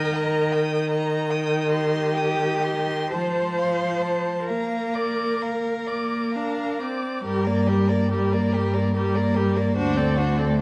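Serene and tender, this slow romantic movement for string quartet unfolds in a rubato 6/8 at roughly 41-53 beats per minute, and it is cut from a longer piece. The first violin carries the melody with a rich, smooth vibrato tone that sits at a distance, while the second violin traces an even, bowed second line with a silky top. Closer and up front, the viola supplies clear, steady accompaniment, and the cello anchors the bass with a soft attack, expressive portamento and a full, resonant voice. The harmony settles in Bb major before turning to G minor at 7.2 s, moving through chords such as Eb, F and Bb before closing on D7. A recital hall reverb with a 1.5-second decay surrounds the quartet, lending the performance a gently spacious, glowing air.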